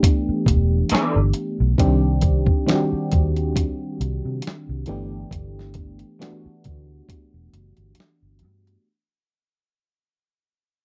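A warbling, mellow FM electric piano with tremolo carries this relaxed, sensual neo-soul R&B groove over G69 and Cmadd9 chords, joined by a gritty, compressed sampler-style drum kit with a thumpy kick, a dark, round muted electric bass from 0.3 seconds, and a fleeting, slightly broken-up guitar line with ensemble chorus at 0.9 seconds, set in a dry, close 1970s-style studio sound with light reverb as the gently swung passage fades out.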